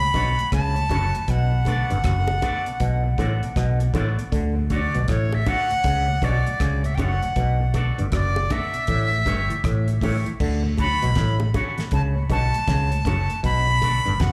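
A reedy, airy concert flute carries the melody up front from the opening, over a round, foam-muted electric bass, a twangy envelope-filtered guitar and a dark tonewheel organ turning on a slow rotary speaker, with the flute and guitar both soaked in dub echo, plate reverb and slapback. This is an uplifting roots reggae groove at 79 BPM in D major, swung on the sixteenths and moving through Dmaj7, Bm7 and A7, with a stringy clav riff through auto-wah and a damped 70s kit with a fat snare and tight kick joining at 0.1 seconds alongside tight, high-tuned bongos set in the background. The whole band sounds like a live club gig heard through the venue's PA, and this cut from a longer piece shifts into a new section at 10.4 seconds.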